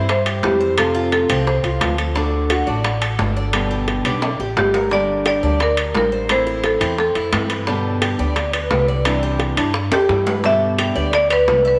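Sunny and warm, this excerpt of Cuban son and guajira has a hard-mallet marimba with rosewood bars carrying the melody in short phrases with a vintage, band-limited tone, over a fingerpicked flamenco guitar, a mellow, double-strung Cuban tres playing arpeggios, a dark pizzicato upright bass, tight high-tuned bongos in the background and ringing, saturated metal-shell timbales, with drum fills at 4.2 and 9.9 seconds, distant woody claves appearing at 10.8 seconds, and a wet echo-chamber reverb over the mix.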